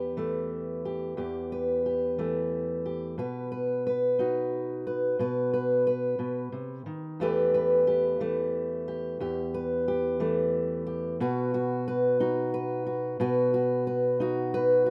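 A fingerpicked steel-string acoustic guitar with a dark, woody tone from old strings carries this bittersweet, wistful folk fragment alone in a straight 6/8, building up through its first 11.2 seconds as it moves between Em and B before a new section begins, sitting up front in a moderate plate reverb with a rough home-demo character.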